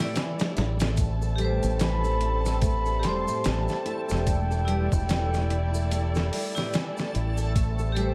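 Dark and brooding, this short trip hop excerpt sits at a slow 73 BPM in A minor with a swung 16th feel, moving between Em7 and Am9 over a pitched-down, gritty sampler drum kit with a thumpy kick and a deep, round dub bass that enters at 0.6 seconds, both up front. An airy, mellow concert flute carries the melody with tape echo, while a metallic, ringing vibraphone with harmonic tremolo, a woody bowed violin section and a full-bodied fingerpicked nylon-string guitar with delay fill the middle, the strings and guitar roughened by 12-bit sampler grit. Far in the background sit bright, distant maracas and a reversed, granular swelling texture with chorus, all wrapped in light room reverb and vinyl crackle.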